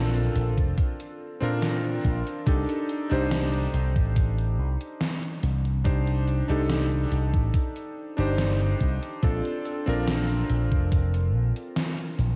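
A clear, vintage electric grand piano and a bright, punchy slap bass open this melancholic, woozy vaporwave fragment at 71 BPM in 4/4, settling into C dorian over a slow move from Bbmaj7 to Cm69 at 2.5 seconds and back to Bbmaj7 at 9.2 seconds. The piano holds the accompaniment up front in a clangy middle register, touched with subtle chorus and tape echo, while the amped bass, shaped by an envelope filter, sits prominently beneath it. A gated 80s digital drum machine enters at 0.2 seconds with hi-hat and a snare drenched in gated reverb, and a thumpy electronic kick follows at 0.6 seconds. Both drum parts have a sampler-style character, re-recorded in a large room. The whole mix is soaked in a lush hall reverb and carries a cassette tape haze, giving this cut from a longer piece a dreamy, drifting atmosphere.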